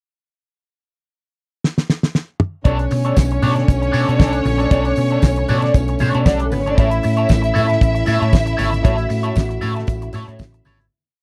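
A tight, fat-snared 70s drum kit opens with a fill at 1.6 seconds and drives a four-on-the-floor beat with open off-beat hats through this short, sultry and glamorous B minor disco piece at 116 BPM. Choppy twangy wah guitar and mellow sustained French horns join at 2.6 seconds. At 2.7 seconds come a round, punchy hollow-body bass playing octave lines with chromatic approach notes, lush dark violins making fast runs into held notes, and distant low-tuned congas. A quiet jingly backbeat tambourine follows at 2.9 seconds. It is all in a dry, close 1970s-style studio sound as the groove moves from Bm9 to A and fades out from 8.8 seconds.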